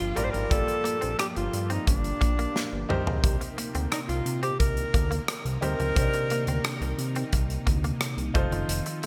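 A romantic, nostalgic 1980s-style pop excerpt in which a breathy, up-front alto saxophone with vibrato and delay sings the melody until 6.9 seconds over a clear concert grand piano, a lush, vintage string machine treated with phaser and ensemble chorus, a fat analog bass, a punchy modern drum kit with gated reverb and a fill at 2.6 seconds, and a bright, twangy clean electric guitar riff tucked in the background.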